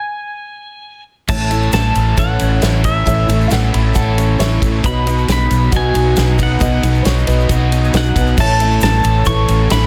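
A pedal steel guitar opens alone, played with fingerpicks and slide, its clean, compressed tone carrying volume swells, slapback echo and plate reverb, before the full band enters at 1.3 seconds in this hopeful, open-road folk and heartland rock cut at 136 BPM in A lydian. Beneath the steel's melody, a round, foam-muted vintage bass sits up front with a natural drum kit with a punchy kick and a grainy egg shaker, while a double-tracked overdriven guitar plays a crunchy riff over a full-bodied jumbo acoustic, a mellow baby grand and a very quiet reedy tonewheel organ with key click, chorus vibrato and a slow rotary speaker. A woody upright piano adds a second line from 3.5 to 7.5 seconds, all within a dense, heavily limited modern master.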